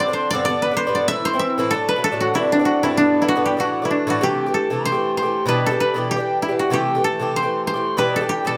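This Celtic folk excerpt is cheerful and lively, moving at a brisk 192 BPM in 4/4 with a light swing on the eighth notes and tuned slightly high at A4 = 441 Hz. The koto carries the melody up front, its woody, fingerpicked tone touched by plate reverb. Above it, a mellow tin whistle plays a second line from a distance, airy and metallic, with vibrato, tongued notes and a soft chiff. An Irish bouzouki supplies picked accompaniment, its double strings giving a warm yet metallic ring close in the mix. The opening passage runs through G, Am, D, Csus2 and Dsus2. From 4.2 s until the cut at 8.6 s, the harmony settles into alternating Am7 and Em7, all heard in a moderate small room.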